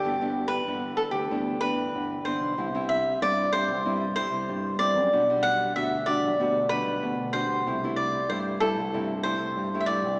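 Samba and choro at 94 BPM in 4/4, this festive, lively excerpt puts a crisp, picked cavaquinho up front on the melody, while a small-sounding, fingerpicked nylon-string guitar supplies warm accompaniment. Underneath, a bright, amped fingered electric bass with an envelope filter holds the low end as the harmony moves from G6 through C and Gmaj7/B to C6. A wet church reverb with a 3.2-second decay fills the space, though the overall sound is that of a small speaker.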